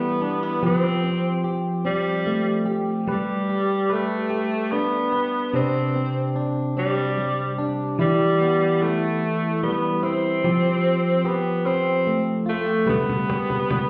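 Six-eight pop ballad at a slow, swaying 49 BPM, heartfelt and cut from a longer piece, where a raspy, gritty tenor saxophone with vibrato sings the melody up front over a bright, twangy, compressed clean electric guitar picking through chords from Em to Fadd9, Gadd9 and Csus2, until a snappy, vintage-toned cajon played with soft hands slips in for a fill at 12.9 seconds, the whole scene bathed in plate and stone-room reverb and heard muffled as if through a wall.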